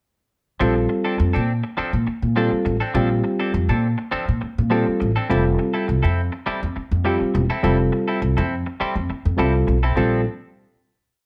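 A straight 4/4 groove at 102 BPM rides on a syncopated riff from the pizzicato upright bass, whose woody, steel-strung tone sits up front in the low register. This short, complete jazz piece in Bb lydian has a slick, bright mood. Beside the bass, a reedy, slightly out-of-tune electric piano plays a push chord rhythm in quartal voicings, its worn sound heard through built-in speakers. A clean, compressed electric guitar adds twangy funk strumming in upper chord shapes, with a subtle chorus lending shimmer to its stabs. The harmony moves from Bbmaj9 to Fmaj9 at 5.3 seconds and settles back on Bbmaj9 for a final chord at 10.0 seconds, all under light reverb and a dark, warm production.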